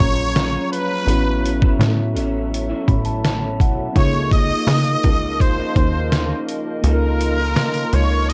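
From the first beat, a gritty, pitched-down trip hop sampler drum kit with a thumpy kick sits up front beside a punchy, filter-plucked analog bass, while a raspy, growling trumpet carries the melody with scooped notes and vibrato over a slightly broken-up lo-fi electric guitar, a mellow tine electric piano that adds a fill from 2.5 to 4.0 seconds, and a warbling, detuned tape-like pad in the background, shaping this hazy, nostalgic indie and bedroom pop excerpt with a dark, warm production and light reverb.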